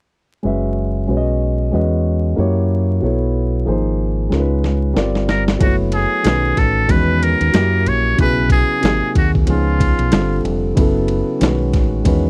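A trumpet with a metal mute carries the melody from 5.3 to 10.4 seconds, its buzzy, breathy tone soft and whispered over a mellow, smoky jazz-hop groove at 93 BPM with a swung 16th feel. A dark grand piano with audible action noise and a round, fingered dub bass play from the start, moving through extended chords such as Emaj9 and F#7b9, while a gritty, pitched-down boom bap kit with a thumpy kick enters at 4.3 seconds with a fill. The dry, close 1970s-style studio sound carries vinyl crackle, and the clip is cut from a longer piece.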